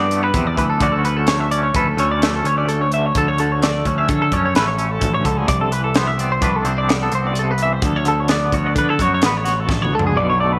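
Bright and intricate, this short excerpt from a longer piece sits in math rock and midwest emo territory, moving at 128 BPM in a straight 5/4. A twangy, clean electric guitar carries the accompaniment with a tremolo effect and a warm, compressed tone, while a twelve-string electric guitar spins high arpeggios up front, its clean, bright, twangy sound bathed in lush chorus. Underneath, a growling picked electric bass, overdriven and direct, sits prominently in the mix. A crisp fusion drum kit with a high-tuned snare, tight kick, hi-hat and toms plays from 0.1 to 10.1 seconds in a small, pumping room, capping things with a fill at 9.7 seconds. The harmony moves from Cmaj9 to Dmaj7, returns to Cmaj9 and settles on D6, all within light, small-room reverb.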